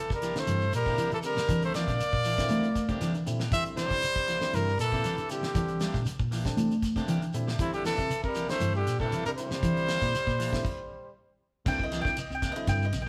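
A clear, close-miked trumpet carries the melody over a raspy tenor saxophone second line in this driving, joyful afrobeat cut, backed by a round, punchy hollow-body bass, a dry 70s drum kit with a fat snare and tight kick, a grainy shekere, dark clean guitar arpeggios, twangy slightly broken-up guitar stabs with a warbly pitch drift, and a barky overdriven tine electric piano that adds a fill, all in a moderate stone room, until a stop at 10.6 seconds gives way to a woody, picked mandolin solo at 11.7 seconds.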